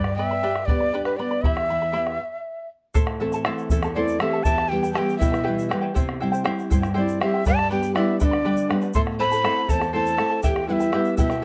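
A steady 6/8 pulse at 80 BPM carries this earthy, wistful Andean folk excerpt in E minor, where an expressive, breathy cane quena with vibrato and crisp chiff sings the melody up front over a mellow, straight-toned wooden pan flute second line, a shimmering double-string charango, a bright fingerpicked nylon-string guitar and a round bombo in a live room, with a brief stop at 2.2 s before a grainy, close tube shaker joins at 2.9 s, all under light reverb and detailed close miking.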